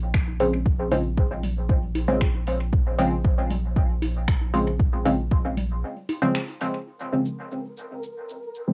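An up-front, overdriven kick and a round analog bass with sidechain pumping drive this hazy, deep dub techno excerpt, joined by muted detuned chord stabs soaked in chorus, phaser and dub echo, a deep house kit with metallic hats, cabasa and finger snaps, background bongos and congas, and a flickering grainy texture that enters at 7.4 seconds after a break at 5.8 seconds, all colored by cassette tape and a moderate booth ambience.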